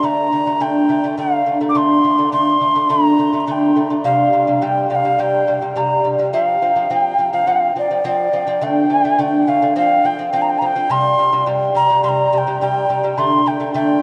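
Mongolian traditional folk at 105 BPM in straight 4/4, with a galloping, vast mood and tuning set at A4 = 441 Hz. Up front, a pure clay alto ocarina carries the melody with vibrato and a crisp, chiffy attack. A delicate, fingerpicked acoustic lute with doubled gut strings, some octave-doubled, plays bright arpeggios over D5, C5 and F5 chords, moving into a second section at 8.6 seconds, while a huge, wet ambient reverb places the listener further back in the room and lossy compression artefacts mark this short cut from a longer piece.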